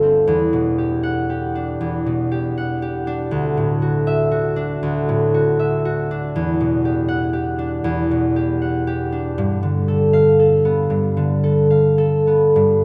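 A solo concert harp, fingerpicked, ringing and up front, opens this wistful, gentle classical excerpt at a rubato 78 BPM in 4/4, moving through Em9, Dadd9 and G9 chords across a span from G1 to F#5 while a long, wet cathedral reverb gives the room a distant, spacious glow.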